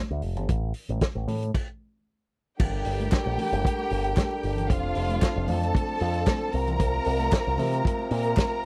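Close, dry 1970s-style studio sound with little reverb frames this sultry, danceable disco cut, taken from a longer piece. Up front, a picked electric bass runs through an envelope filter, direct and punchy, beside a mid-forward soul drum kit of kick, medium-tuned snare, hi-hat and crash with a rolled-off top, while bright, high-tuned congas struck with hard hands sit distant in the background. The groove breaks for a stop from 1.5 to 2.6 seconds before opening into a fuller second section. At 2.6 seconds a lush, bowed studio violin section with expressive vibrato enters on a second line, and a mellow French horn section holds sustained chords as the harmony moves through Gmadd9, F and C7sus4. Crisp human handclaps join at 3.1 seconds, tucked in the background.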